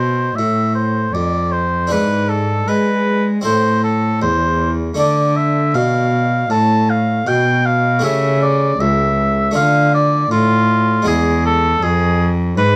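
Solemn and grave, this short excerpt of a baroque-style sonata movement in A minor moves at 79 BPM in a straight 4/4, with a mellow oboe carrying the melody up front, its light vibrato sounding distant and roomy, over a round, plucked Flemish-style harpsichord and a dark, gut-string bowed cello with a reedy, smooth top, all captured by close, detailed microphones in light reverb as the harmony passes from Am through Dm to a closing E.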